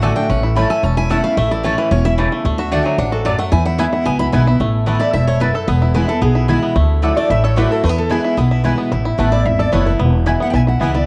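A home cassette recording with light reverb carries this lively, virtuosic bluegrass fragment in E mixolydian, racing at 223 BPM in a straight 4/4. A picked steel-string guitar takes the full-bodied lead as a solo through the opening 4.6 seconds, joined in melody by a twangy, percussive fingerpicked banjo, while a second fresh-strung guitar picks accompaniment, a round double-strung mandolin adds stabs, and a woody, thumpy upright bass sits up front with dark gut-string pizzicato. At 5.0 seconds a mellow, nasal lap resonator guitar slides in behind them with a metallic second line as the chords cycle between Asus2, E and Dadd9.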